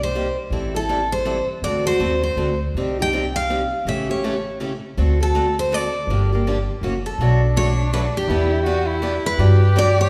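A bright, full-bodied jumbo steel-string guitar carries the melody up front in this fiery, bittersweet fragment of acoustic string swing in the jazz manouche style, moving at 162 BPM in a swung 3/4. Beneath it, a woody, thumpy upright bass on gut strings plays pizzicato with a dark, up-front presence, while a boxy parlour guitar, also picked, supplies the accompaniment from 0.2 s. The harmony moves from Cm7 through Am7, D7, Cm, A7 and Gm7 before an F#7 leads into the second section at 7.2 s, where the chords turn to Bm7, Em7 and Gmaj7. At that point a single bowed violin joins with a second line, its soft attack, vibrato and portamento giving an expressive, warm quality. The whole ensemble sits in a wet recital-hall reverb, with the resonant space of a church or concert hall, and the passage is cut from a longer piece.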